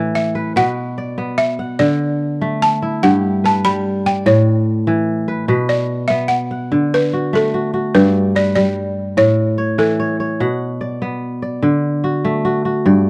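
Joyful and hypnotic, this West African traditional piece, cut from a longer performance, pairs kora and balafon in a straight 12/8 feel. The fingerpicked kora sits up front, spinning ringing, crisp arpeggios across a broad span from low to high. Over it the balafon carries the melody, its rubber mallets drawing a woody, buzzing, full tone that is close-miked and placed up front, with a touch of plate reverb. The balafon takes a solo through the opening 6.7 seconds, then continues into the second section until 11.0 seconds, while the kora rings on to the close at 13.1 seconds. The harmony cycles through Bm, D, G and A, and a modest small-room ambience rounds out the dark, warm production.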